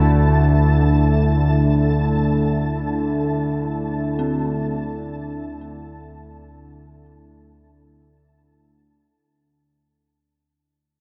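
Drenched in a cavernous, cathedral-like reverb with a dark production, this ominous, vast dark ambient drone drifts in free time and fades out from the very start. Up front, a vintage analog drone warbles and evolves on sawtooth and pulse waves, while a bright, airy pad sweeps through sustained chords with a noisy filter swell. A mellow, flickering granular texture hovers high above, and a very quiet, eerie FM bell traces inharmonic arpeggios through a phaser, lingering alone after the other parts stop and fading by 9.9 seconds.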